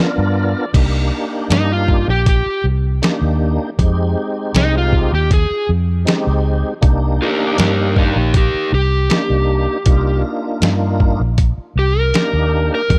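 Brooding and mournful, this straight-eighth soul blues fragment puts a dark, overdriven slide guitar melody up front over a full tonewheel organ turning through a slow rotary speaker with chorus vibrato, a round, foam-muted vintage electric bass entering at 0.2 seconds, and a gritty, compressed sampler-style drum kit with thumpy kick, snare, hi-hat and crash joining at 0.7 seconds, set in a dry, close sound as the harmony moves from G7#9 to Cm9 and Fm9.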